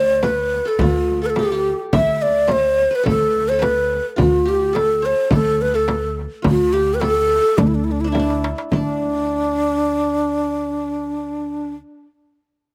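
A breathy low ney leads this passionate, stately Arabic maqam piece in D maqam rast, its end-blown reed cane tone close and up front with vibrato and tongued notes, moving at 106 BPM in a straight 4/4. Beneath it, a bright-edged qanun with triple strings plays a second line set further back with slapback echo, while a woody, gut-strung upright bass holds D2 and a deep frame drum joins a crisp metal-shell darbuka. The drums play a fill at 8.2 seconds and stop at 9.0 seconds, leaving ney, qanun and bass in a dry outdoor sound with little reverb.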